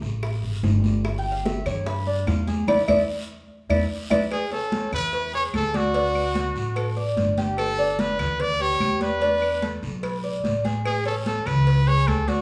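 A straight, danceable 4/4 groove of high-tuned congas, tight bongos and cowbell, woody background claves and a raspy guiro drives this sunny Cuban son and guajira, with a growly, dark pizzicato upright bass up front, a metallic, double-strung Cuban tres picking arpeggios from 1.2 s, a band accent at 2.7 s, and a bright trumpet with light vibrato taking the solo melody up front from 4.3 s, the band playing live in one large, reverberant studio room.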